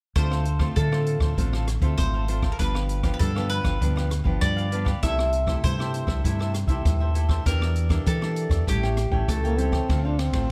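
Samba and choro in D minor at 99 BPM, this lively, bittersweet excerpt moves through a Dm7, G7, C6, Em7b5, A7 progression in a straight 4/4. A picked mandolin with doubled strings carries a second line over a crisp cavaquinho and a woody, fingerpicked nylon-string guitar with old strings, while a round, dark fingered electric bass and an open jazz kit with a boomy kick, dark cymbals, hi-hat, ride and rim click sit up front in a natural studio room with light reverb. Near the end, the mandolin drops out at 9.9 s just after a dark trombone takes the melody at 9.3 s with light vibrato, scooped notes and a smooth top.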